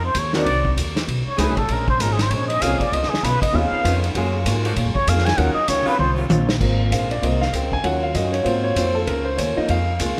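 A plunger-muted trumpet leads this joyful big band swing fragment, its breathy, whispered wah-wah tone full of scooped notes and soft attacks as it carries the melody for the first 6.1 seconds. Beneath it, a woody pizzicato upright bass and a vintage drum kit with dark cymbals, a boomy kick and a pumping small-room sound drive the swing, while the saxophone section holds tight, lightly vibrato chords in the background. A boxy, picked ladder-braced acoustic guitar joins at 1.7 seconds, sitting in the background behind the clear grand piano, whose audible action noise and long sustain give it an intimate, natural presence. After a drum fill, the key shifts at 6.6 seconds and the piano steps forward for a solo over bass, drums and guitar. A moderate scoring stage reverb wraps the ensemble in a roomy, lively space.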